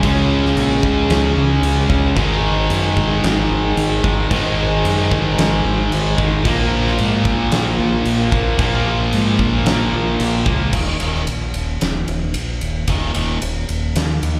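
A growling, overdriven fingered electric bass sits up front in this menacing, aggressive hard rock clip, cut from a longer piece and heard live through a venue's PA with club reverb. A huge arena drum kit shares the front of the mix, its fat snare and punchy kick set against bright crash and ride cymbals in a big room sound. Three overdriven, picked electric guitars play riffs further back: two carry slapback echo, and the third is double-tracked. The straight 4/4 riffing moves through Db5, Ab5 and Bb5 power chords before shifting to Eb5 at 10.7 seconds, where two of the guitars stop. The remaining guitar drops out at 13.4 seconds, leaving bass and drums to drive on until the clip ends at 14.4 seconds.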